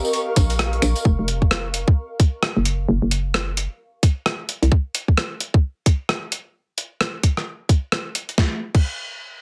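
Bouncy and soulful, this short cut from a longer two-step UK garage track swings its sixteenths over a steady 4/4 pulse. A granular cloud pad opens with a blurred, evolving haze over a B-flat minor chord, breathing with sidechain pumping through its own reverb until about 1.1 seconds, alongside a jingly acoustic tambourine that stops at 1.0 seconds. A breakbeat sampler-style kit of gritty snare, hi-hat, rim clicks, finger snaps and crash cymbal sits up front with overdrive and a small-room character, while a tight, layered electronic kick, also overdriven, drives beneath it until about 8.9 seconds. A hollow, knocking FM bass with a fast attack and punchy decay bounces through the low register from 0.4 to 4.7 seconds. The mix is dry and heavily squeezed, with a dense, radio-style compression that keeps the drums forceful and close.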